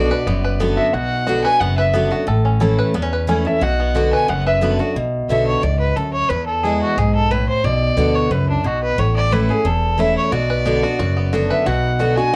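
A clear, biting fiddle leads this driving, lonesome bluegrass excerpt, its nasal, earthy bowed line carrying light vibrato and sitting up front from start to finish. Underneath, a bright, full-bodied dreadnought guitar is picked close and prominent, while an upright bass with gut strings gives a woody, thumpy pizzicato pulse. A twangy, percussive fingerpicked banjo adds its own melody, dropping out at 5.0 seconds and returning at 10.3 seconds. The tune moves at 179 BPM in a straight 4/4, in B dorian, cycling through Bm, A and E chords. The recording has a moderate studio ambience and the worn, warbling character of old cassette tape, with a wavering pitch drift.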